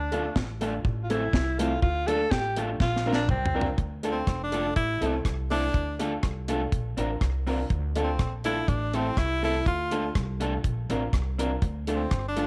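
A breathy, whispered tenor saxophone with slapback echo opens this energetic, mischievous ska piece in D minor at 122 BPM, soloing over woody pizzicato upright bass, a dry, deep reggae drum kit with a high-tuned snare and tight kick that plays a fill before the saxophone stops at 3.8 seconds, a dark, slightly broken-up electric guitar bathed in spring reverb, and boxy upright piano stabs, until a clear, close-miked tenor saxophone with vibrato and scooped notes takes over the melody from 4.1 seconds, the band heard in a small room with light reverb and a faint mains hum.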